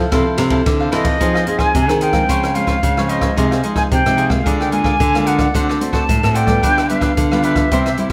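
A mellow, crisp cavaquinho and a bright, fingerpicked nylon-string guitar open this sunny, festive samba and choro excerpt, alongside a second nylon-string guitar playing full-bodied bass lines with audible finger squeak. An up-front open jazz kit with dark cymbals, a boomy kick and rim clicks enters at 0.1 seconds, and from 0.9 seconds a distant, airy concert flute carries the melody with expressive vibrato and tongued notes. The harmony moves from major-seventh colour into minor and dominant chords under a light reverb.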